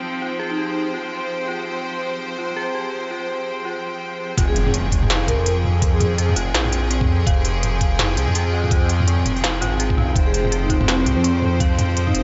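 Half-time drum and bass in F minor at 166 BPM with a swung, spacious yet tense feel, this excerpt opens on clear, biting strings holding sustained chords under an eerie, inharmonic synth bell arpeggio soaked in chorus and dub echo, while a mellow vibraphone with soft mallets traces a ringing melody in the background, until the drop at 4.4 seconds brings in a thick, swirling phased saw bass up front, a gritty, thumpy pitched-down kick, and an industrial kit of clanging snare, crisp hats and toms re-recorded in a large room, marked by a background electronic impact.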